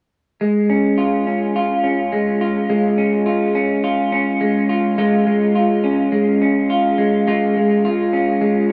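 In a straight, even 4/4, this dreamy, floating dream pop fragment features a lone electric guitar through a small old amp, bright, twangy and slightly broken-up, sitting up front from 0.4 to 8.7 seconds. Lush chorus and tape echo color the picked lines, and a huge, wet ambient reverb with a long tail surrounds them. The passage moves into a new section at 5.0 seconds.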